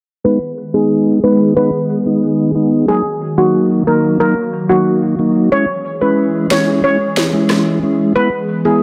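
A dark, shimmering steel pan carries the melody up front from 0.2 s, its notes softened by a low-pass filter and trailed by tape echo, in this bouncy, sultry dancehall excerpt at 91 BPM in G# minor. Beneath it, a mellow tonewheel organ plays flute-like accompaniment with audible key click, turning through a slow rotary speaker. A hollow, warbling pad enters at 0.4 s with slow-attack sustained chords, thickened by ensemble chorus and carrying a vintage, detuned character. A sharp, overdriven electronic snare and rim click appear only briefly at 6.5 s, sounding re-recorded in a large room. The harmony moves from G#m through D#m and C#m to E, with a filter sweep running across the passage and a lush hall reverb binding the parts together.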